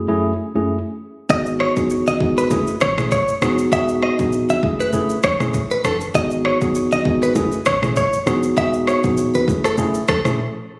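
Smooth and hypnotic, this afrobeats excerpt at 99 BPM in F# dorian opens with a mellow, up-front tine electric piano alone, circling F#m7, G#m7 and Emaj9, before a bright, picked clean electric guitar riff with tape echo, a round sine sub bass in the background, and an electronic afro-pop kit with deep kick, rim click, shaker and toms join from 1.3 seconds, followed by low-tuned, soft-handed congas at 1.8 seconds, all set in a moderate plate reverb with a phone-in-the-room sheen before a brief break at 10.4 seconds.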